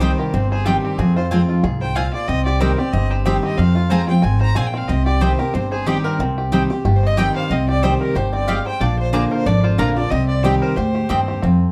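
Driving 4/4 swing with lightly swung eighths carries this haunting, rustic bluegrass excerpt in a minor key, its harmony rocking between tonic and subdominant before a brief lift near the end. Twangy banjo, played with fingerpicks, and a clear, earthy fiddle with light vibrato share the melody from the start, while a full-bodied dreadnought guitar, picked up front with audible finger squeak, fills out the accompaniment. Thumpy, woody pizzicato upright bass sits forward in the mix beneath them, and a bright mandolin adds double-string stabs. At 5.5 seconds a lap resonator guitar enters in the background with a nasal, metallic slide line as a second voice. Moderate studio reverb and a dark production give the ensemble an intimate, dusky glow.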